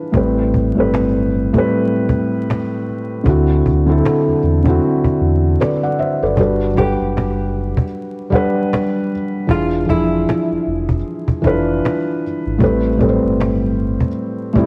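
A felt-muted upright piano opens this cosy, nostalgic lo-fi hip hop excerpt in G major at 77 BPM with a swung 16th feel, its soft, mellow chords carrying audible action noise through a low-pass filter, joined almost at once by a deep sine sub bass with octave and a woody, close cajon with faint snares. The piano plays a fill from 5.2 s, and at 6.8 s a dark, clean hollow-body jazz guitar comes in up front with a short picked melody colored by cassette tape and analog delay, stopping at 11.3 s. The harmony moves through Am9, D9, Gmaj7 and E7b9 before returning to Am9, all set in a small room with light reverb, vinyl crackle and the grain of a home cassette recording.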